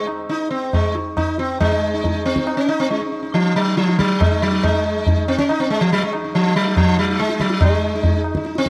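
In a straight seven-beat cycle that gradually speeds up, this short, meditative and solemn fragment of a longer Hindustani classical piece is set in raga Bageshri. Up front, a plectrum-plucked acoustic sitar carries the melody from the start, its buzzing tone alive with shimmering sympathetic strings. A high-tuned, ringing tabla joins at 0.1 s and sits in a small room, and the music moves into a new section at 1.6 s, all under a moderate plate reverb and a layer of vinyl crackle.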